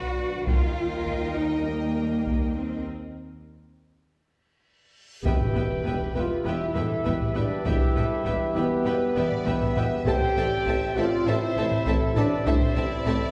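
Epic orchestral film score at 100 BPM in 4/4, dramatic and cut from a longer piece, settling into E minor from 5.3 s. The strings sound from the start: a rich, focused violin section carries the melody in the background, a second violin section adds a clear, intense line that sounds distant, violas give clear accompaniment, and a close, lush cello section joins expressive double basses on the bass. A mellow French horn section holds sustained chords throughout, while a taiko ensemble struck with heavy sticks drives the drums from 0.5 s, the loudest part in a live room. After a break from 2.9 s and a drum fill, a huge, bright reverse cymbal swells in the background at 5.0 s into an impact at 5.3 s, where the full brass and winds enter: a warm trombone section and a vintage woodwind section hold chords, a mellow trumpet section with soft attack plays stabs, a very quiet tuba reinforces the bass, and timpani with hard mallets strike an E2 briefly. 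The harmony moves from Em to Am at 10.1 s, and the whole ensemble sits back in a wet scoring-stage reverb that lends it grand, spacious depth.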